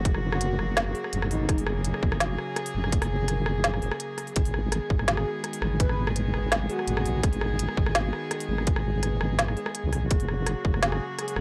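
A dry, cassette-worn fragment of tense, cinematic half-time drum and bass at 167 BPM in G# minor, where a hard-clipped, overdriven electronic kick and an electronic kit with a woody snare and smooth hats sit up front beside a deep, dark wobble bass with chorus, while a soft, sul tasto cello section holds sustained chords with sidechain pumping, a hollow kalimba plays arpeggios through 12-bit sampler grit and analog delay in the background, and a breathy, flute-like synth lead with vibrato drifts in at 0.3, 5.1 and 10.8 seconds.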